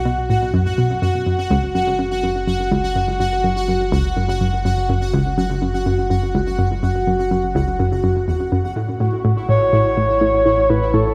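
A deep sine sub bass and a pulsing, tempo-synced gated texture with chorus and shimmer reverb open this expansive, cosmic space-music excerpt at 124 BPM in a straight 4/4, joined almost at once by a round, detuned analog pluck riff with wave-folded edges, a filter sweep and analog delay. The harmony moves from B5 to F#5 and reaches A at 8.8 seconds. At 9.5 seconds a breathy, flute-like synth lead with vibrato enters up front in a cavernous, washed-out room whose reverb tail lingers for seconds.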